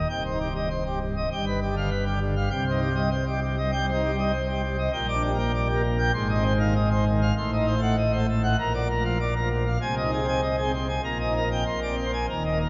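Brilliant and jubilant, this classical organ toccata fragment sets a full, up-front pipe organ plenum with gleaming mixtures and romantic voicing spanning from C1 to C6 alone in a cathedral-drenched reverb that rings for 5.1 seconds, moving in straight 4/4 through a minor-key progression that ends poised on a Bb9 at 11.6 seconds.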